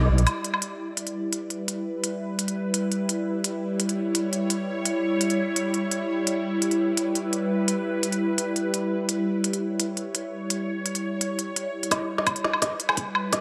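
A half-time drum and bass groove at 170 BPM in 4/4 rides an organic electronic drum kit of crisp hats, a woody snare and woodblock, tape-warm and up front, which comes in at 0.2 seconds and pauses for a brief break before settling into a heavy, tense passage in E dorian. A detuned, string-like sawtooth drone holds sustained chords throughout, opening on Em, with a slow attack, long release, vibrato, a noise layer, phaser and sidechain pumping. At 11.9 seconds an overdriven, knocking electronic kick joins a drum fill that builds toward the cut-off, all bathed in a dreamy, reverb-soaked mix.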